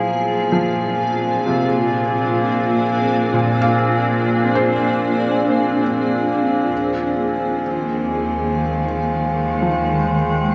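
A serene, luminous ambient passage in free time opens with a granular cloud pad sitting up front, its bright, blurred chords drifting slowly with a slow attack and long release inside their own reverb. Beneath it, a bowed studio cello section carries the bass with intense, close tone, light vibrato and a touch of tube saturation, while a pedal harmonium holds a reedy, breathing drone on F3 and a glass harmonica adds pure, ethereal shimmer with audible beating. At 0.5 s a felt-muted upright piano enters in the background, playing intimate arpeggios through tape echo, its action noise faintly audible. The harmony rests on Bb7 before shifting to Ebm at 6.7 s. A wet concert-hall reverb blended with small-room ambience gives this short excerpt from a longer piece an airy, floating glow.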